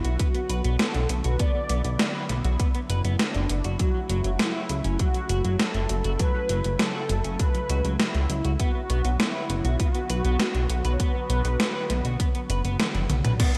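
A glossy, nasal synth bass sits up front in this nostalgic, driving synthwave excerpt, its plucky pulse-and-sawtooth tone carrying a chorus shimmer at 100 BPM in B minor. A punchy, layered electronic kick joins at 0.2 seconds alongside an overdriven, sampler-style 80s drum machine whose gated-reverb snare, hi-hat, crash and toms bring a fill from 12.8 to 13.4 seconds. Over this, a mellow synth brass lead with a round, dark tone carries the melody with vibrato, ring-modulated detuning, tape colour and delay until 12.8 seconds. A slightly broken-up electric guitar plays a fingered riff through analog chorus and delay, while a swirling, evolving analog pad holds sustained chords in the background, phased and gently pumping with sidechain compression. The harmony moves from Bm to F#m7 and back to Bm, all framed by bright, 1980s-style digital production with light reverb and digital ambience.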